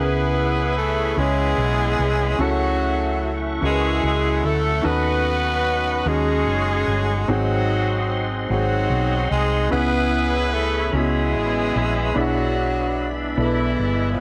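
Slow gospel in a straight 6/8, soulful and fervent, heard in a 14.2-second cut from a longer piece. A growling tenor saxophone sits up front with the melody, its raspy, gritty tone carrying vibrato, joined by a clear horn section in a smooth, pop-style ensemble voicing with light vibrato. A vintage grand piano supplies smooth accompaniment while a reedy tonewheel organ holds sustained chords in the background, colored by a slow rotary speaker, chorus vibrato and audible key click. A very quiet, mellow French horn section adds classical-style sustained chords beneath, and a round, punchy hollow-body electric bass played with the fingers anchors the low end with a dark, amped sound. The harmony moves from C#m7 through D#m7b5 and G#7 before returning to C#m7, all set in light reverb with a studio ambience.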